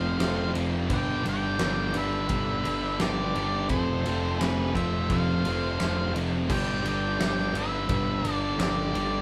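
A huge arena drum kit sits up front in this sunny, swaggering classic rock excerpt, its fat snare and punchy kick booming in a big room, with crash and ride cymbals, entering at 0.2 s. The tempo sits at a straight 86 BPM in 4/4 and G mixolydian, moving between F and G chords throughout its 9.2 seconds. A dark, fuzzy octave-fuzz lead guitar carries the melody, while a second octave-fuzz guitar adds a lower line in the background. Beneath them, three picked guitars stack up the riff: a sludgy distorted part in the background, a bright crunchy overdriven one, and a double-tracked crunchy guitar, the last two very quiet. An overdriven fuzz bass holds the low end, and a reedy, clean electric piano heard through its built-in speakers plays a very quiet accompaniment. The band sounds like it is playing live in one room with moderate studio ambience.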